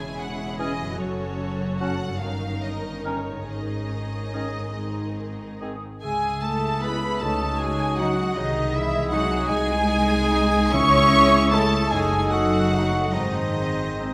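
A wet concert-hall reverb surrounds this short passage from a slow, romantic classical movement for symphony orchestra, elegiac and melancholic, in C# minor and 6/8 at about 45-55 dotted-quarter beats per minute with a rubato feel. A close, lush violin section carries the warm, smooth melody with vibrato, while a second, darker violin section sits distant in the background with a soft, woody tone and a very quiet viola section adds accompaniment beneath it. Rich cellos and a double bass section with expressive portamento form the bass, and a ringing, fingerpicked concert harp spreads arpeggios across the texture. From 0.6 seconds the winds join: a pure flute section with rolled-off highs, a mellow cor anglais, a very quiet, warm clarinet and a dark bassoon add supporting lines. A tight, dark trumpet section enters with stabs at 6.0 seconds, followed shortly by very quiet sustained chords from the French horns, and hard-mallet timpani on calf heads strike an articulate C#3 at 10.7 seconds as the harmony returns to C# minor before closing on G#.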